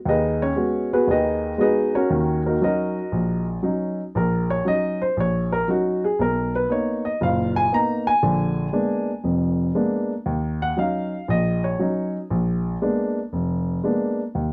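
Cool and smoky, this brief solo jazz piece cut from a longer performance swings at 118 BPM in Eb minor, with a dark, mellow baby grand piano sitting up front in a moderate club ambience as it moves through Abm7, Ebm7, Bmaj7 and Bb7b9 chords from 0.1 to 14.5 seconds.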